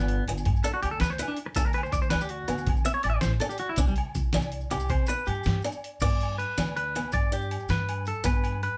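A 12/8 pulse at 108 BPM drives this joyful highlife guitar band excerpt in G major, where a bright, twangy clean electric guitar sits up front with an arpeggiated solo for the first 6.0 seconds over a boxy, picked swing-style acoustic guitar, a woody pizzicato upright bass, a gritty, compressed sampler-style drum kit with thumpy kick and fat snare, and grainy maracas and ringing agogo bells in the background, the band playing together in one room with moderate studio ambience as the chords move from G through D and Csus2 back to G.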